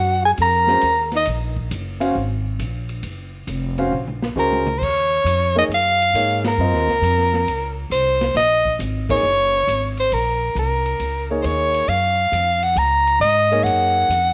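A swung 4/4 groove at 136 BPM drives this searching, hypnotic modal jazz excerpt in Eb dorian, resting on a single Ebm9 chord. A breathy, up-front soprano saxophone carries the melody with vibrato, subtone and scooped notes, joined briefly at the start by a dark alto saxophone with tape echo before the alto stops at 1.3 seconds. A woody pizzicato upright bass, an intimate concert grand piano with audible action noise and long sustain, and an open drum kit with dark cymbals and a boomy kick fill out the light, roomy sound, with a drum fill at 3.9 seconds and band accents at 6.4 and 9.0 seconds.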